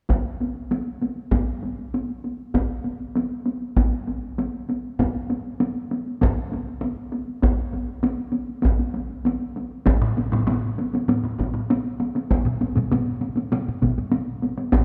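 A straight, steady pulse in 4/4 drives this ceremonial Japanese traditional piece for taiko drum ensemble, a short passage cut from a longer work. Two taiko ensembles play from the opening, both struck with hard sticks and placed up front: one carries a compact small-room sound, the other a livelier room tone. A third taiko ensemble joins at 10.0 seconds as the music moves into its second section, its heavy sticks giving a close, dry, weighty attack. A fourth ensemble, also with heavy sticks and a small-room character, adds a brief entry from 12.5 to 14.1 seconds. A concert-hall reverb with a long 2.2-second tail surrounds the drums and lends the driving performance a grand, resonant space.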